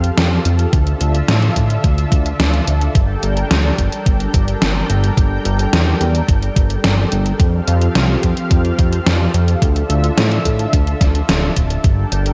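A fat, sawtooth analog bass with a filter sweep sits up front in this cinematic, driving synthwave piece at 108 BPM in G dorian, moving through Fadd9, Dmadd9 and Gmadd9 chords. Alongside it, a silky, detuned string pad with ensemble chorus and sidechain pumping holds sustained chords. A gated 80s digital drum machine plays overdriven hi-hat and a gated-reverb snare, and a thumpy, overdriven electronic kick enters at 0.7 s; both drum parts sound re-recorded in a small room, and a light reverb sits over the mix.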